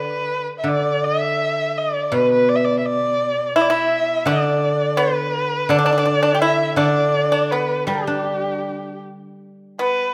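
A dark, woody erhu and a ringing, silvery guzheng open this short fragment of graceful, pastoral Chinese chamber music, moving freely in rubato around 82 BPM in 4/4. The single bowed erhu carries the melody up front, its smooth top colored by vibrato and portamento, while the guzheng, plucked with fingerpicks, supplies the accompaniment from a lower register. At 3.6 seconds the pipa joins with a second line, its fingerpicked tone bright, dry and percussive, adding crisp attack beside the sustained erhu. All three instruments sit close to the listener, framed by a moderate recital-hall reverb that gives the ensemble an intimate sense of space. The passage runs to 10.1 seconds, breaking off as part of a longer piece.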